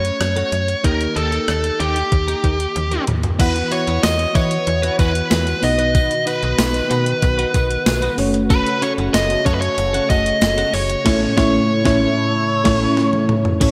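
A biting, overdriven lead guitar carries the melody up front over a dreamy FM electric piano shimmering with chorus and tremolo, a clean twelve-string guitar riff in the background, a snappy slap-like FM bass and a thumpy 12-bit drum machine with gated reverb, and after a drum fill a sweeping, resonant pad and a very quiet jingly tambourine join at 3.4 seconds, wrapping this glossy, romantic 1980s-style pop excerpt in a lush hall sheen before a full-band accent from 11.1 seconds.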